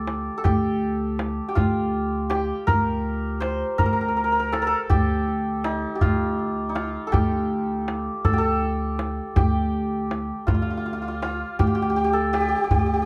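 Bright, shimmering hammered santur carries a melancholic, longing melody in the Shur mode on D, ringing out up front across the whole excerpt cut from a longer piece. Pizzicato upright bass with a dark, growly woody tone holds a low D beneath it, while a tombak played with soft hands adds a tight, close pulse from 0.1 to 12.9 seconds. The Persian modal ensemble moves slowly at 54 beats per minute in a straight 6/8, heard from further back in a studio room with a short, wet reverb.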